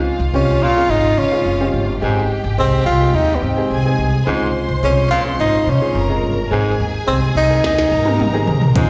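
A straight 4/4 groove at 107 BPM drives this short uptempo passage of 1960s-style soul in Ab major, cut from a longer piece, with a danceable, warm mood. The upright bass sits up front with a woody pizzicato tone on steel strings, and a vintage baritone saxophone adds a low riff with vibrato, both arriving within the first second. Over them, a breathy, close-miked tenor saxophone carries the jazz-style melody, while an intimate upright piano with audible action noise plays accompaniment and a lush bowed string section, full of vibrato and portamento, supplies a smooth second line. The harmony moves between Dbmaj7 and Abmaj7, and slapback echo colours the horns, piano and strings. An overdriven electronic drum kit with a soft kick, tiny snare and clicky hats only enters at 7.6 seconds for a fill, sounding as if re-recorded in a large room. The whole mix carries the feel of a live gig heard through a venue's PA, with recital hall reverb.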